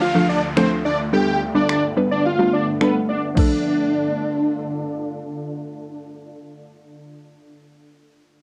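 Dance-pop in D dorian at 107 BPM, this confident, energetic cut from a longer piece moves from Dm to Gadd9 and back as a filter sweep runs through its first 3.4 seconds, with a background downlifter. Huge, lush supersaw chords carry the melody up front through cassette tape grit and analog delay, while a hollow, bouncy square pluck with dark chorus and an ethereal, mellow pad both pump under sidechain. A layered pop drum kit with a knocking kick, crash and finger snaps enters at 0.6 seconds and stops at 3.5, all set in a moderate studio reverb with a home-cassette character.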